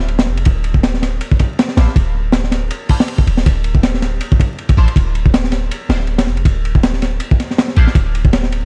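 Driven by a crunchy breakbeat kit at a lightly swung sixteenth-note feel, this dark, atmospheric drum and bass cut with a jungle edge rolls along in four, its tight kick, high-tuned snare, hi-hat and dusky ride cymbal sounding saturated and gritty with a rolled-off top, placed up front in a studio room. Beneath it, a deep, boomy 808-style bass sits on a single D minor chord for the whole passage, its sine tone topped with a noise layer and a fast attack that decays away. At 1.8 seconds a band-passed chord stab appears in the background, nasal and sawtooth-edged with ring modulation, bright and treated with phaser, ensemble chorus, 12-bit sampler grit and dub echo, before dropping out at 7.9 seconds. The production is dark and close, with little reverb and a bed of vinyl crackle, and the passage is cut from a longer piece, ending at 8.7 seconds.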